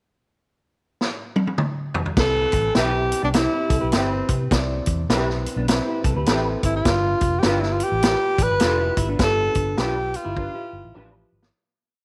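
Uplifting and danceable, this short uptempo 1960s-style soul piece runs at 102 BPM in 4/4 with a swung eighth-note feel, in C major and tuned slightly low at A4 = 436 Hz. A vintage drum kit opens alone with a fill at 1.0 seconds, then drives a soul beat with the snare on all four beats, its punchy kick, medium-tuned snare and dark, rolled-off cymbals sitting up front in a studio room sound. At 2.2 seconds the verse begins as a breathy tenor saxophone takes the lead up front with a smooth, motif-based pop melody built from call phrases, moving between C4 and B4. Beneath it, a muted fingered electric bass plays a round, amped, syncopated line with chromatic approach notes, while a woody, boxy, slightly detuned upright piano keeps quarter-note chords in close voicing with grace notes in the background. Two guitars sit further back: one through a small old amp adds bright, slightly broken-up chops on the backbeat with an ensemble chorus, and a clean, fingered one with analog chorus slips twangy fills in thirds between phrases. 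The harmony moves from Cmaj7 to G7 under light reverb, and the piece fades out from 9.2 seconds as the drums close with one more fill.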